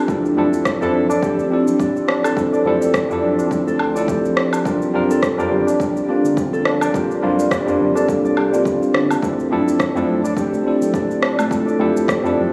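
A warbling, lo-fi tape-like pad and a thumb-plucked Celtic harp playing ringing arpeggios with tape echo open this mystical, meditative organic downtempo excerpt in D minor, moving at 105 BPM with a swung 16th feel over Dm7, C9sus4 and back to Dm7. A bright, barky tine electric piano sits up front with sidechain pumping and tape echo, joined by a round, deep analog bass, a punchy electronic kick, and up-front electronic cabasa, rim click and woodblock, while a low-tuned tabla enters at 0.4 s in the background. The whole mix floats in a huge ambient reverb, with the compressed character of a phone recording in the room.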